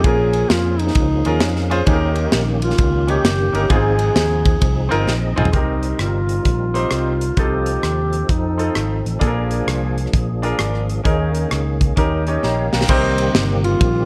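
Swung eighths in 4/4 drive this hopeful, uplifting uptempo gospel excerpt, where a breathy, mellow duduk with scooped folk-style notes and a slapback echo carries the melody until 9.1 seconds, returning only briefly near the close. A bright baby grand piano with audible action noise accompanies until 13.6 seconds, while a fat, lightly overdriven tonewheel organ sits in the background with key click, chorus vibrato and a slow rotary speaker, adding short fills. A punchy fingered electric bass and an airy, up-front studio drum kit anchor the groove, with drum fills marking the section changes in a dark, lightly reverberant mix.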